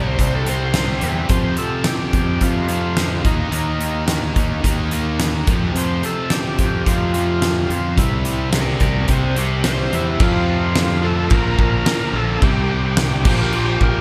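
Sunny and driving, this 108 BPM classic rock excerpt rides on an up-front arena drum kit with a fat snare and punchy kick, a growly fuzz bass, and two double-tracked background riff guitars, one distorted and one overdriven with spring reverb, while a gritty tonewheel organ through a slow rotary speaker carries the melody from 1.3 seconds and a bright, biting lead guitar adds a second line that returns at 8.5 seconds, all over a progression that moves between C chords and power chords on F, E-flat and B-flat.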